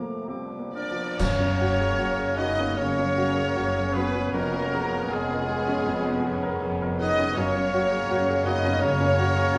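A clear grand piano with a vintage tone leads this lyrical, lush excerpt from a romantic movement for piano and orchestra. Its short-sustained melody sits up front in F# major, moving with rubato at 63-84 BPM in 4/4. Around it, a dark clarinet, a pure, very quiet flute group and an oboe with light vibrato carry second lines, while a mellow, distant bassoon and a French horn section holding sustained chords fill out the accompaniment. At 0.7 s a violin section joins with a smooth second line in the background, and at 0.8 s another takes a melody with soft attack and expressive vibrato. A roomy trumpet section adds stabs from 0.7 s. At 1.2 s the harmony moves from Bb to F#, cellos and double basses enter with a rich bowed bass, and dark cymbals with concert bass drum mark an accent until 2.7 s. From 1.6 s violas add focused accompaniment as the chords pass through C#7/E# back to F# in a wet recital hall.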